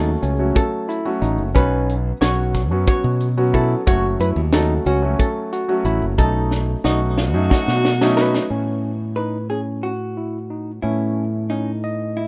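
Progressive instrumental band music in 7/8, intricate and bright, cut from a longer piece: a dark, clean hollow-body jazz guitar carries the melody over intimate baby grand piano accompaniment and gritty, barky overdriven electric piano arpeggios, while a punchy fingered electric bass and a tight funk drum kit with a high-tuned snare sit up front, the drums ending with a fill and stopping at 8.5 seconds, as a breathy alto saxophone with vibrato, scooped notes and digital delay adds a brief second line from 6.8 seconds, in a mix with small-room ambience and the rough feel of a home demo.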